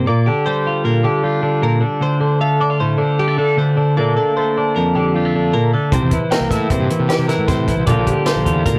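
An up-front, warm, compressed twelve-string electric guitar carries the chords of this intricate, wistful math rock and midwest emo clip at 154 BPM in 5/4, joined from the start by a second, bright twelve-string guitar picking clean arpeggios higher up, while a dark, round, overdriven fuzz bass and a dry, compact cocktail drum kit with a high-tuned snare and punchy kick enter at 5.9 seconds, all captured in a rough rehearsal-room recording with a moderate booth ambience as the harmony moves from Gm7/Bb through Dm7 and Bbmaj7 to C7 before returning to Gm7/Bb.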